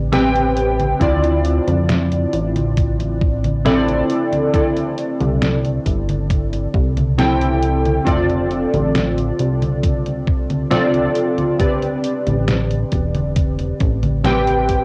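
The excerpt opens on warbling, lo-fi synth keys, up front and nostalgic with chorus, tape echo and cassette wobble, over a glossy, mellow chorused synth bass, setting a woozy, hazy vaporwave mood at a slow 68 BPM in D dorian. A detuned 8-bit drum machine with a fat, overdriven snare, hi-hat and congas comes in almost at once, and a thumpy, sampler-style electronic kick joins at 1.0 seconds, both re-recorded in a small room with cassette grit. The chords drift from Am11 through Dm9, C69 and F6 before returning to Am11, all with little reverb and the intimate feel of a home cassette recording.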